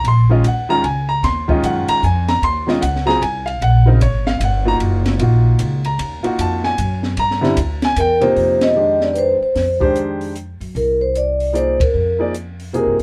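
A grand piano with short sustain, a woody, growly pizzicato upright bass and a dark, smooth cocktail drum kit with a high-tuned snare and punchy kick open this swinging modal jazz waltz together in a small, lightly reverberant room, moving from Ebm9 to C9 with a hypnotic, searching mood. At 8.0 seconds a mellow, ringing vibraphone played with soft mallets and its motor off enters close and dry at the front to carry the melody, just ahead of the move to an F13sus4 chord. The band accents together at 8.6 and 11.7 seconds in this fragment cut from a longer piece.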